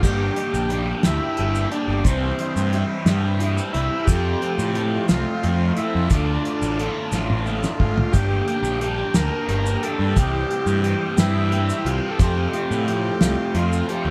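A dark, hypnotic psychedelic rock groove in G dorian opens at once at a slow 59 BPM in 6/8, with a thuddy, cloth-damped drum kit carrying a fat snare and tight kick under a bright, double-tracked overdriven guitar riff with phaser and an up-front fuzz bass. A buzzy vintage combo organ sings the melody with light vibrato and slapback echo, while a second organ holds heavily wavering chords in the background, grainy maracas sit close, and a shimmering tanpura drone hums barely audibly until 6.1 seconds. The band plays live in one moderately ambient room, cycling through Gm, C, Fadd9 and Dm, with a drum fill at 7.1 seconds in this fragment cut from a longer piece.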